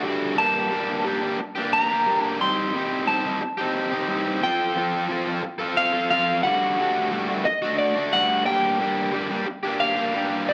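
Rock in a cinematic, melancholic mood and an unhurried, straight three-beat pulse, where a bright, overdriven, double-tracked garage guitar drives an up-front picked riff while a dark, slightly broken-up electric guitar through a small old amp carries a high picked melody with slapback echo from 0.4 seconds, both set in a moderate recital-hall reverb as the harmony moves through Gm, Cm/G, Fadd9 and D/G before returning to Gm in this fragment cut from a longer piece.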